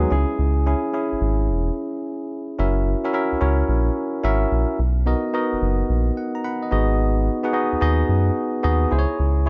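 A bell-like, bright tine electric piano carries this confident, slick new jack swing groove with a short fill at 5.9 seconds, sitting up front over a deep, round analog bass with a fast attack and sustained tone, all in a dark production touched with light reverb and digital ambience.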